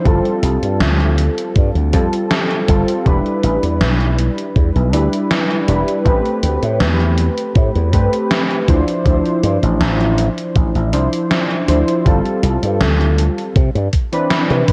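Heard through cassette-tape haze and a light reverb, this hazy, nostalgic vaporwave excerpt in D dorian drifts at 80 BPM: detuned, warbling lo-fi synth keys with subtle chorus, 12-bit sampler grit and tape echo carry chords from G9sus4 through Em7, Am9 and Dm9, while a growly, punchy slap bass with an envelope filter sits up front over a thumpy electronic kick and a gated 80s digital drum machine's hi-hat and gated-reverb snare.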